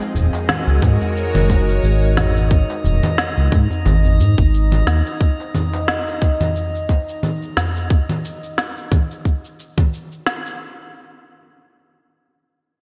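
Mystical and hypnotic, this organic downtempo fragment, cut from a longer piece, sets a brief string-like, tense bowed drone with vibrato, built-in reverb and sidechain pumping over an up-front smooth, dark synth bass, a drifting, glassy harmonics texture with chorus, a tight electronic kick, electronic cabasa, woody snare and congas with slapback echo, and a crisp, deep, saturated darbuka in the background, all sitting in a lush hall that gives a big arena sound, with the harmony resting on Ab9sus4 until 5.2 seconds.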